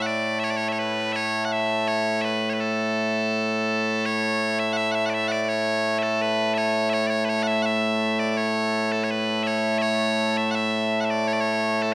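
Stirring and ceremonial, this short cut from a longer Scottish traditional piece features a lone set of bagpipes playing pipe music in A major. The tempo sits at 83 BPM in a straight 2/4 metre. The bagpipes sound loud, bright and piercing, holding a continuous tone up front from start to finish and ranging from A2 to F#5. A recital hall adds a wet reverb with a 1.4-second decay, so the pipes ring out into a sense of open space. The opening phrase runs to 4.1 seconds before a second strain carries the music on until the cut ends at 11.9 seconds.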